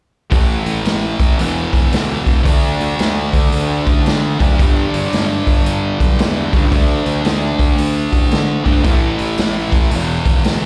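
Heard as a live club gig through the venue's PA with a touch of room reverb, this short, driving, gritty slice of swung blues rock and southern rock sets a thick, double-tracked fuzz guitar riff up front over a growly, overdriven fingered electric bass and a punchy vintage drum kit with a rolled-off top, all three playing together throughout while the chords move from A5 through D5 and G5 and back.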